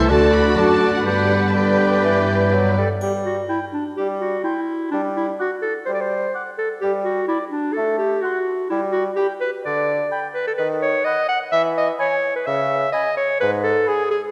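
Quirky and mischievous, this playful, whimsical film cue moves at 127 BPM in a straight 4/4 in G major, cut from a longer piece. It opens with a brief full-orchestra passage in which a warm violin section carries the melody over a lush string body: a rich, expressive second violin line, close viola, a warm cello section and a deep double bass section sitting up front, all bowed with vibrato, while a mellow French horn section holds chords in the background, over harmony moving from D to G. At 3.0 s the strings and horns drop away and a triangle gives a brief, dark shimmer as the woodwinds carry on. A clear, prominent clarinet stands out in this lighter stretch, alongside an airy, crisp silver flute high above, a warm oboe with light vibrato, and a clear bassoon supplying the accompaniment down low. The woodwinds wander through F#m/A, G, a rootless B/D#, E5 and C#m until about 14 seconds, all set in a wet concert hall reverb that lends the cue a spacious, storybook glow.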